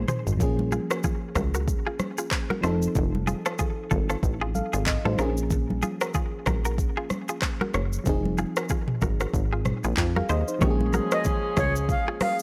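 A swung, sultry afrobeats groove opens on a short drum fill, with an up-front electronic kit of deep kick, metallic hats, handclaps, rim clicks, shaker and toms, while damped, thick-skinned congas sit in the background and a punchy, funky analog bass plucks beneath. A warbling, vintage FM electric piano accompanies with mellow chords through a Bbm7–F7–Bbm7–Fm7 progression as a bright, twangy clean electric guitar picks a compressed riff trailed by tape echo. At 10.6 seconds a tight horn section with octave doubling and its own tape echo adds a second line, and a breathy, reedy jazz flute with vibrato enters on the melody at 11.1 seconds, all in a dry, gritty recording that cuts off mid-piece.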